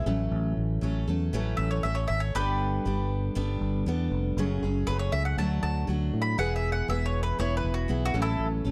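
Warm and open-road in mood, this short excerpt from a longer folk rock and heartland rock piece moves at 119 BPM in a straight 4/4, settled in A major with tuning at A4 = 442 Hz. A woody, double-strung mandolin carries the melody as a solo across the whole passage, sitting up front and ranging from E4 to B5. Beneath it, a picked steel-string acoustic guitar with an auditorium-sized body provides accompaniment, while a fingered electric bass, round, direct and amped, holds the low end from E1 to A2 and sits a touch louder than the other parts. The harmony opens on A6 at 0.1 seconds, moves through Gadd9, F#madd9, D and E, and returns to A6 at 8.1 seconds. Studio reverb and a dark, warm production shape the whole passage.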